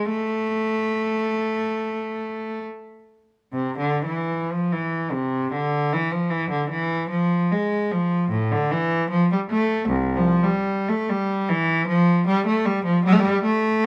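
A single bowed cello opens at 0.0 s, playing alone in a baroque-style suite movement cut from a longer classical piece. The mood is radiant and flowing, in A minor at 75 BPM in 4/4, with a rubato feel that lets the pulse breathe. The gut-string tone is nasal and reedy in a period style, shaded by a light vibrato, and sits up front across a range from C2 to A3. A moderate stone-room reverb with a 1.0-second decay gives the sound a resonant space. After an opening phrase, a new section begins at 3.5 s and carries the line through to the cello's final note at 13.8 s.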